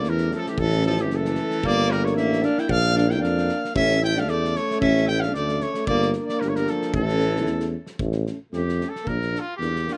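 Restless and fiery, this Balkan brass band excerpt moves at 113 BPM in a swung 2/4, set in A phrygian dominant and cycling through A, Gm and Bb. A clear, up-front trumpet carries the melody over a vibrato-laden alto saxophone second line that drops out at 7.7 seconds, while two euphoniums accompany, one mellow and very quiet and the other soft-attacked, sitting in the background with a slapback echo. A dark tuba anchors the bass, a loose drum kit with a fat snare and tight kick pumps in its room, and the trumpet takes a solo from 8.0 seconds in an otherwise dry mix.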